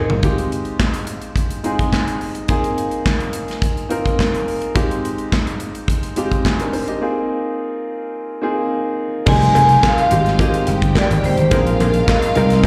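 Celebratory and glamorous, this disco excerpt moves at 106 BPM in a straight 4/4 over Fm7 and Bb9sus4 chords, heard as a live gig through a venue's PA with light recital-hall reverb. A clear concert grand piano with deep bass and long sustain carries the accompaniment from the start alongside a punchy, polished drum kit with handclaps, hi-hat, toms and crash, playing through a break from 7.0 seconds until 9.3 seconds. Then a growly, amped slap bass, lush bowed strings with tape echo, a very quiet, mellow French horn section and a background cowbell arrive, while a ringing, metallic vibraphone with slow motor vibrato takes the melody until 11.8 seconds.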